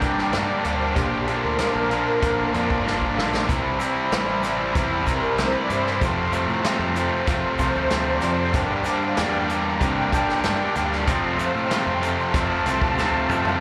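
A distorted electric guitar riff sits up front with overdrive and slapback echo, backed by a compressed overdriven second guitar, a punchy vintage drum kit with fills at 2.9 and 13.0 seconds, a bright fingered bass, mellow string-machine violas holding sustained chords through ensemble chorus, and a grainy, very quiet tube shaker from 3.5 seconds, all in a gritty, swaggering classic rock excerpt heard through a club PA with small-room reverb over a Gm, Bb, C, F progression.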